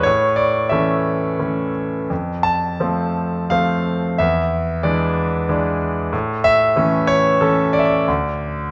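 In a flexible, rubato three-four, this brief, moody classical fragment for lyrical solo piano moves through A, F, E7 and back to A before the chords give way at 8.1 seconds. The concert grand sounds brilliant and polished, with deep bass, long sustain and an up-front presence spanning D2 to A5. A moderate scoring-stage reverb lends a brooding sense of space to this passage cut from a longer piece.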